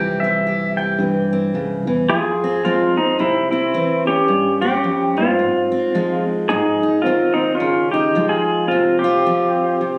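A pedal steel guitar opens this wistful, intimate acoustic folk piece in F minor at 109 BPM with a swung 4/4 feel, its clean, compressed slide lines and volume swells sitting up front over a fingerpicked steel-string acoustic guitar and a round, fingered electric bass. At 2.1 seconds the bass drops out, and a louder, twangy second pedal steel takes the melody while the first continues as a second line, all captured on a phone in a club room with reverb and compression.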